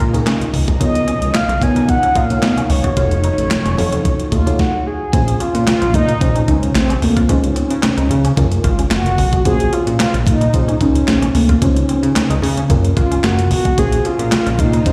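Slick and danceable, this excerpt of early-eighties boogie funk in Bb minor moves at 111 BPM, with a round, horn-like synth lead carrying the melody over a glossy chorused synth bass, a thumpy sampler-style drum machine with handclaps, twangy clean electric guitar riffing, a dreamy FM electric piano with tremolo, low-tuned congas and a very quiet vintage string machine that drops out at 4.6 seconds for a brief stop before the Bbm9, Dbmaj7 and Gbmaj7 groove takes hold at 5.1 seconds, all heard as a live gig through a venue PA in recital hall reverb.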